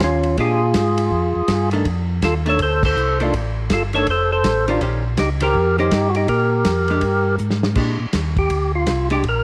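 Light reverb and a small-room ambience frame this bluesy, greasy soul jazz organ trio at 162 BPM with a swung 4/4 feel, cut from a longer piece. A fat, lightly overdriven tonewheel organ with third-harmonic percussion and slow rotary speaker carries the melody up front, while a second, round and mellow tonewheel organ with key click holds down the bass beneath a dry, dark soul drum kit with a tight kick. A clean, compressed hollow-body archtop guitar comps through Bb6, F13 and Eb13 changes; the band hits an accent at 2.8 seconds, and after a drum fill the organ breaks into a solo at 7.8 seconds over Bb13.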